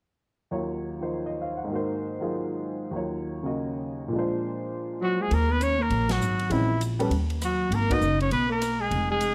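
Moody and late-night, this short cut from a longer small-group swing and bop piece moves at a brisk 200 BPM in 4/4 with a swung eighth-note feel, centered in Eb dorian before darkening to Eb minor. A woody, slightly detuned upright piano opens alone at 0.5 s, laying down vintage-toned accompaniment over Ebm9, Ab7 and Bb7 changes before it drops out at 8.0 s. At 5.0 s a clear, forceful trumpet takes the melody with light vibrato and scooped notes, joined by a mellow alto saxophone on a second line, its subtone and smooth top sitting beneath the trumpet. From 5.3 s a growly, thumpy pizzicato upright bass comes up front alongside a polished, airy drum kit of hi-hat, kick, ride, rim click and snare, and the full band hits accents at 6.1 and 7.9 seconds. A moderate large-studio reverb gives the group a roomy sheen as the harmony passes through Bbm7b5 and settles on Abm9.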